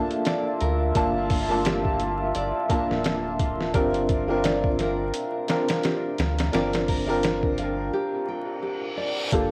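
A clear, woody upright piano opens this smoky, hypnotic trip hop excerpt at 86 BPM, its slightly detuned, boxy chords shimmering with harmonic tremolo, cassette tape wear and tape echo, sitting up front over a deep, moody pad whose detuned sawtooth voices carry chorus, built-in reverb and 12-bit sampler grit. A compressed, pitched-down sampler-style drum kit arrives almost at once with a thumpy kick, medium-tuned snare and hi-hat in a swung 4/4 groove, gritty and tape-warm in the foreground. A full-bodied nylon-string guitar adds fingerpicked arpeggios through cassette tape and tape echo, while a round, nasal analog bass enters at 0.6 seconds with fast-attacking, sustained low notes. The harmony moves from Gm7 to Bbadd9/G, and a break arrives at 7.9 seconds, where an electronic reverse cymbal rises in at 8.3 seconds. Light reverb and digital ambience surround a home-cassette sound dusted with vinyl crackle.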